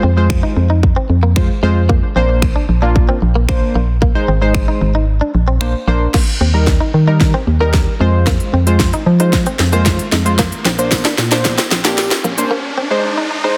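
A hollow, organ-like FM bass sits up front in this summery, carefree dance-pop excerpt at 113 BPM in Eb major, pumping against a punchy house kit with a cracking, softly clipped snare, crisp hats, finger snaps, shaker and crash. Round sawtooth analog keys with chorus and sidechain pumping carry the chords beneath a bright, twangy clean guitar riff, while the kick drops out from 5.1 to 6.1 seconds before a build-up with a drum fill and a filter sweep. A background riser enters at 9.0 seconds and a very quiet, jingly tambourine appears briefly, set in light digital reverb within a dense, heavily limited modern master.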